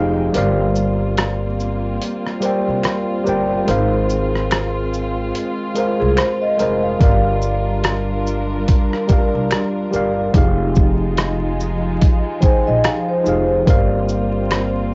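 A worn, slightly out-of-tune tine electric piano opens this melancholic, hazy lo-fi hip hop excerpt, lightly overdriven and heard through its built-in speakers, joined at once by dark, soft-attack bowed strings holding sustained chords and a woody, up-front pizzicato upright bass on gut strings. At 0.3 seconds a compressed, gritty sampler-style soul drum kit arrives with a thumpy kick, hi-hat, rim click and shaker, re-recorded in a small room and sitting up front, and at 1.2 seconds close, dry finger snaps join, ticking along in the background. The groove moves at 72 BPM in 4/4 with a lazy 16th-note swing, in F dorian, drifting through chords such as C9sus4/G, Ab6, Gm7 and Fm9. A metallic, ringing vibraphone played with medium mallets and a slow motor vibrato adds brief second-line phrases at 6.0 and 12.4 seconds, softened by tape echo. The piano, strings and vibraphone are muffled by a low-pass filter and cassette tape, the bass is tube-saturated, and the whole home-recorded cassette sound carries vinyl crackle, light reverb and a dull top end.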